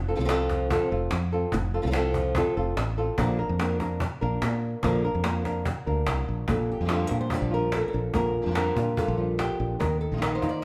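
A fingerpicked flamenco guitar carries the melody up front, its finger squeaks audible, in this proud, festive flamenco excerpt in Bb major at 145 BPM. A woody, growly fretless electric bass sits punchy and close beneath it, while a snappy, vintage-sounding cajon with snares joins at 0.3 seconds. At 6.5 seconds a second flamenco guitar with fresh strings adds stabs as the harmony moves from Bb6 to Ebsus2, all played live together in a moderately reverberant large studio.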